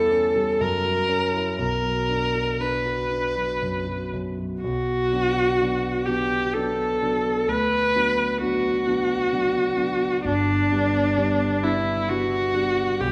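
A wet concert hall reverb surrounds this recording, which is cut from a longer classical piece in the romantic style. It is a yearning, elegiac duo in a slow, rubato triple metre for viola and grand piano, both heard from start to finish. The single bowed viola carries the melody in a rich, focused voice with vibrato, sitting up front. Beneath it, a dark, mellow concert grand provides the accompaniment, reaching into deep bass. The harmony opens on a diminished chord and an unsettled seventh before resting on a minor chord for a long stretch, and a second section begins at 4.6 seconds before the excerpt turns to a major chord near its close at 13.1 seconds.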